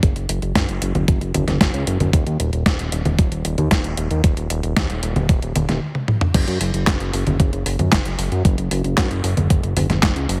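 A heavily compressed, radio-like sound with light reverb frames this short italo disco excerpt, danceable and sunny at 114 BPM in a straight 4/4. Up front, a fat analog bass built from a detuned sawtooth holds thick, sustained notes with a fast attack, ranging from D#1 to F#2 across the whole clip. A thumpy electronic kick drum, sampler-style and overdriven with small room reverb and a re-recorded large-room character, drives the pulse and stands out as the loudest part. Beside it, a detuned 8-bit digital drum machine, also overdriven and up front, supplies congas, crash cymbal, handclaps, hi-hat, toms and a medium-tuned snare. A drum fill at 6.0 seconds leads into a new section at 6.3 seconds, and the kick drops out at 10.1 seconds while the bass and drum machine carry on to the end.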